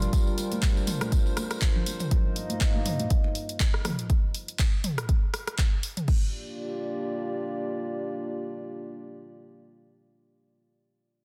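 A dark, nasal analog pad opens this afro house excerpt at 121 BPM in G minor, its detuned square and sawtooth tones and sub octave holding slow-attack chords under a chorus effect and sidechain pumping. Together with it comes a deep house drum kit of shadowy hats, handclaps, rim clicks, toms and crash cymbal, plus a jingly tambourine that rings out for a short moment, while an up-front, tape-warm electronic kick and bright, high-tuned congas join almost at once. The groove is driving and spiritual, swung on the sixteenths, with the congas sitting thin and band-limited in the background. The harmony moves from Gm7 to F7sus4/G at 2.1 seconds before returning to Gm7. The drums and kick drop away at 6.2 seconds, leaving the moody pad to sustain on its own until 10.6 seconds in a dry, dense and heavily limited mix.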